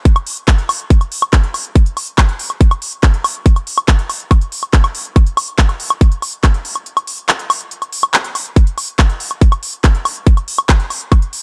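Trance at 141 BPM in a straight 4/4, this short excerpt cut from a longer piece has a psychedelic, alien mood carried entirely by percussion. A tight, layered electronic kick drum sits up front alongside a techno drum kit of handclaps, smooth hi-hats and woodblock with a tape-warm character, as if re-recorded in a small room. The sound stays dry, with a break from 6.9 to 8.6 seconds before the groove resumes.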